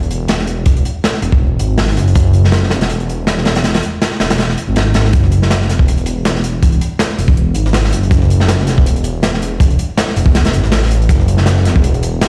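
A thick, menacing detuned saw bass sits up front, its beating sawtooth tone saturated yet mellow, rumbling low under a dark, atmospheric drum and bass and jungle groove in F# minor at 161 BPM with a light swing. A crunchy, gritty breakbeat kit drives alongside it with a tight kick, a medium-tuned snare and a rolled-off top, and at 5.1 seconds a very quiet, pitched-up sampler-style kit joins with a high-tuned snare and hi-hat. This cut from a longer piece sounds as if played on a big sound system in a bare room, bathed in large studio reverb and vinyl crackle.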